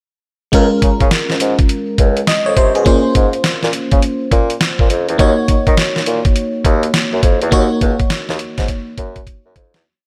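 Bouncy and confident, this short new jack swing R&B piece sets a gritty, pitched-down boom bap drum kit with a thumpy kick and hard-swung beat up front beside glassy, bell-like FM electric piano chords treated with chorus and phaser and dotted with short fills, while a mellow, distant bassoon carries a swung synth-funk bass line with muted ghost notes and chromatic approach notes, inside a dreamy mix soaked in hall reverb that fades out from 7.5 seconds as a closing drum fill enters at 8.7 seconds.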